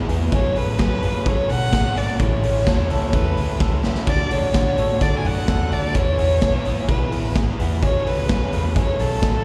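A straight 4/4 pulse at 128 BPM drives this wistful, restless stretch of jangly indie pop in F# minor, cut from a longer piece, with a gritty, punchy garage drum kit up front in a bright stone room that throws in a fill at 3.6 seconds, while a foam-muted, round electric bass anchors the low end. A crunchy overdriven guitar picks out accompaniment and a dark, slightly broken-up guitar through a small old amp fingers lo-fi arpeggios in the background, both carrying slapback echo over chords moving from F#madd9 through A, D and E. From 0.3 seconds a single expressive violin sings the melody with vibrato, portamento and a soft bowed attack, its slapback and delay adding to the feel of a live gig heard through the venue's PA with recital hall reverb.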